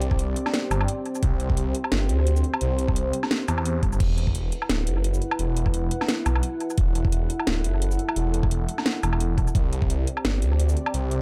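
A half-time drum and bass groove at 173 BPM with a swung sixteenth feel drives this dark, spacious E minor excerpt cut from a longer piece, where an up-front kit of cracking snare, metallic hats, crash, shaker and woodblock runs through analog delay beside a knocking electronic kick from 0.1 to 9.9 seconds, a thick, swirling detuned saw bass with phaser sits low and saturated, and a deep, moody analog pad with chorus and sidechain pumping holds slow-attack chords, all in an echo-heavy mix with light reverb.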